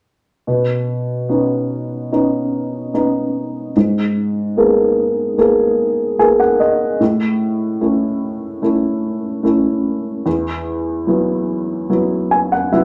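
Tender and heartfelt, this slow pop fragment at 73 BPM in B major features a solo upright piano, dark, woody and slightly detuned with audible action noise, playing intimate accompaniment up front in a wet studio reverb through Badd9, G#madd9, A and Esus2, with brief fills at 5.8 and 11.9 seconds.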